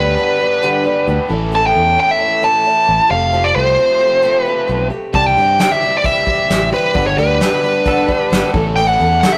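A smooth, overdriven lead guitar sits up front and carries the melody through this short, hopeful folk-rock and heartland-rock clip, cut from a longer piece. Beneath it, an old ladder-braced acoustic guitar is picked with a woody, boxy tone from worn strings, while a biting, double-tracked overdriven guitar plays a bright riff. A fingered electric bass adds a punchy, direct low end, and a soft brush drum kit with an airy, polished sound and a tight kick enters at 5.1 seconds. A clean, twangy pedal steel guitar with slide and volume swells appears in the background at 7.9 seconds for a brief second line. The chords move from G to A, Fadd9 and C before returning to G and A. A moderate stone-room reverb and tube saturation give it a rough rehearsal-room character.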